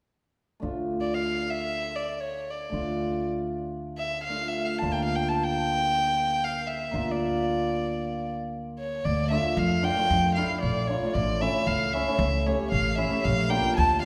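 In free time, this bittersweet, soulful klezmer piece in D harmonic minor, cut from a longer piece, sets a dark, sul tasto violin melody with light vibrato and an airy bow over shimmering hammered cimbalom and woody, growly pizzicato upright bass, all washed in a recital hall's reverb as the chords move from Dm through Bb/D before shifting at 9.0 seconds to a second section touching A and Bb.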